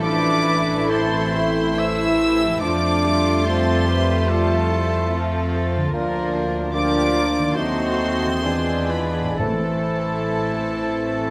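Yearning and elegiac, this slow, rubato romantic orchestral passage is cut from a longer piece. A sul tasto violin section carries the high, intimate melody. A second violin section, a clear clarinet, an airy silver flute and an oboe weave supporting lines. A mellow bassoon and a floating viola section accompany alongside a warm French horn section. A ringing concert harp plays very quiet arpeggios alongside cellos and an up-front, distant double bass section. Hard-mallet timpani strike softly at the start and again from 9.4 to 10.9 seconds, as the harmony darkens through a diminished chord into E7b9 before settling home, all bathed in a moderate scoring-stage reverb.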